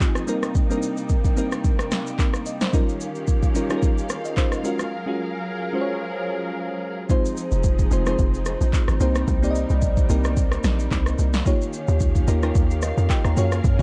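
Deep and soulful, this amapiano excerpt moves at 110 BPM with a gentle 16th-note swing, as a sparkling, bell-like FM electric piano with chorus and lush bowed strings with vibrato and sidechain pumping carry chords from Cm7 through Eb9 and Gbmaj9, over a layered deep house kit with a deep kick, punchy snare, claps, rim clicks, shaker and toms dusted with 12-bit sampler grit, while a hollow, bouncy log drum bass joins up front at 7.5 seconds after a break from 4.9 to 7.1 seconds, all in a dark, dry production.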